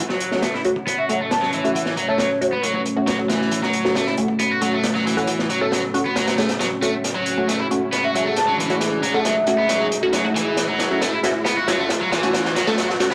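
An overdriven, bright garage guitar riff sits up front in this funky, energetic breakbeat excerpt at 136 BPM in F# minor, over a crunchy, saturated drum kit with a punchy kick and a rolled-off top that plays a fill from 7.0 s. Muted, detuned dub chord stabs with phaser and delay and a deep, moody analog pad pumping under sidechain outline the F# minor chord, while a very quiet electronic riser builds throughout. A pure, hollow concert flute with vibrato and sampler grit drifts in for short melodies at 1.0 s and 8.0 s, all within a dry, gritty cassette sound and a small room.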